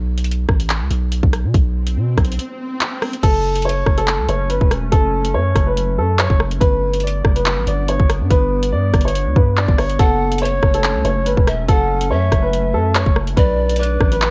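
A deep, sine-like 808 bass opens this cold, ominous drill cut at 142 BPM in half-time F# phrygian, joined at once by an up-front electronic kit of hard-clipped kick, metallic hi-hats, handclaps, rim clicks and crash, and after an electronic swell a dark, boxy grand piano takes the melody at 3.2 seconds over a glassy, ethereal FM pad with chorus and reverb in the background, while an airy bamboo pan flute with vibrato, chiff and tape echo adds a second line from 10.0 seconds, all steeped in a worn, warbling cassette-tape drift through a digital ambience in this fragment of a longer piece.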